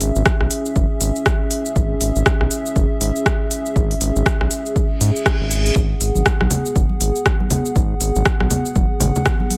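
A swung 120 BPM afro house groove in 4/4 rides on crisp hi-hats, rim clicks and shaker from an up-front, tape-tinged drum kit and a punchy, layered electronic kick, while a round, deep analog bass and a dark, detuned pad with chorus both pump under sidechain over C#m moving to G#m7 at 5.8 seconds; a brief reverse cymbal sounds at 5.0 seconds and bright, soft-handed congas join at 6.2 seconds in this earthy, dry excerpt from a longer piece.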